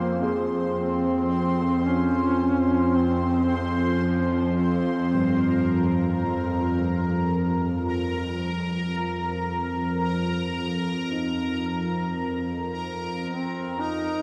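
Dark and cavernous, this dark ambient drone fragment, cut from a longer piece, sets a tense, string-like bowed drone up front under a bubbling, resonant texture of random filter steps, very quiet mellow baby grand piano arpeggios from 0.2 seconds, and a folk-style solo duduk with vibrato and delay that sings at the opening and returns at 13.3 seconds, all bathed in a cathedral reverb as the chords move from Fm to Absus2/F before a fade-out from 10.9 seconds.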